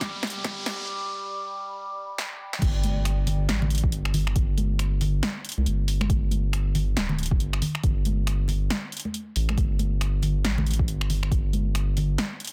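A brooding, cavernous deep dubstep excerpt at 138 BPM in a swung half-time feel opens on a build-up, with a resonant, ring-modulated sawtooth drone on a G5 chord, a thick, saturated sub bass up front, an overdriven electronic kick, a deep house kit of crash, finger snaps, hi-hat and punchy snare, and an electronic riser; the drop at 2.6 s brings an impact as the drone ends, and dry, hard-handed congas enter in the background at 2.8 s, set in a dense, heavily limited master with little reverb.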